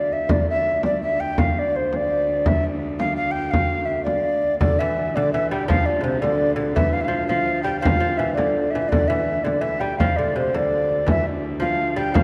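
A dark, wet church reverb with a long 3.3-second tail surrounds this cut from a longer medieval dance, giving it an ancient, mysterious air. In D minor at 111 BPM in a straight 6/8, a mellow, airy tenor recorder with vibrato carries the melody over a pure, ringing bowed viola da gamba drone on D and the close, soft-handed beat of a frame drum. At 4.6 seconds a bright, fingerpicked lute with doubled gut strings enters up front, adding a delicate second line.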